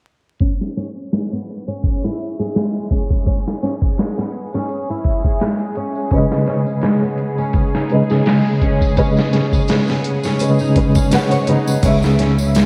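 Trip hop at 84 BPM in C# minor, brooding and hypnotic, with a light swing on the sixteenths, cut from a longer piece. A dark, fingerpicked flamenco guitar plays arpeggios from 0.4 seconds, colored by analog chorus, delay and a low-pass filter, and a filter sweep runs across it until 11.8 seconds. Alongside it, a gritty, overdriven sampler-style drum kit with a thumpy kick and medium-tuned snare sits up front, while a tambourine adds close, dry percussion low in the mix. A tense, nasal, string-like drone with vibrato and its own reverb hovers in the background from 1.5 seconds, and at 6.1 seconds a felt-muted upright piano enters, soft and intimate with tremolo and tape echo, as the harmony moves to G#m over C#. A fingered electric bass arrives at 11.8 seconds on C#m7, and the whole dreamy mix is soaked in a lush hall reverb with vinyl crackle and a low-pass filter.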